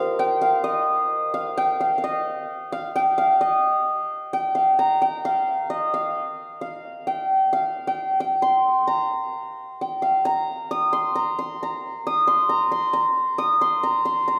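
A solo santur carries this short devotional passage, its hammered strings shimmering and ringing through a range from Eb4 to Eb6. The piece is Indian classical music in raga Durga, centred on Bb and tuned to A4 = 435 Hz, with a serene, prayerful mood. It moves in a straight 3/4 at 132 BPM and speeds up across its 14.4 seconds. A brief opening passage gives way at 3.4 seconds to a longer second section that runs to the end. The santur sits up front, yet the listener seems placed further back in a recital hall, and the hall's generous reverb gives each struck note a long, glowing tail. The recording is cut from a longer piece.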